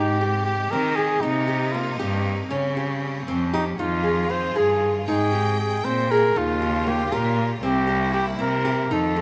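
Moving in a straight 5/8 at 234 eighth-note beats per minute, this pensive, restless contemporary chamber piece, cut from a longer work and lasting 9.2 seconds, sets a warm, close-miked solo flugelhorn melody with light vibrato up front, over fingerpicked arpeggios from a small acoustic nylon-string guitar, a clear, focused bass line bowed by a single cellist, and lush, intense sustained chords from a bright studio string section, captured with close, detailed microphones and light reverb as the harmony drifts from Abmaj7 through Cm7 and Fm7 to a closing C7.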